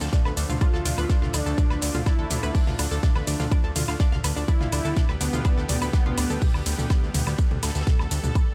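Melodic techno at 124 BPM in D dorian, this cinematic, hypnotic excerpt moves from Dm7 to G/D as a lush, warbling unison pad with chorus sits in the background under a round analog pluck arpeggio carrying chorus and dub echo, while a detuned unison lead with vibrato and tape echo enters at 0.6 s and plays until 6.4 s. A fat sawtooth bass with a filter sweep sits up front, and it, the pad, the pluck and the lead all pump against a punchy electronic kick that enters at 0.1 s. A house kit with metallic hats, shaker, toms and woodblock rides over a dry, damped 70s kit with dark cymbals and a fat snare, all set in a small room reverb.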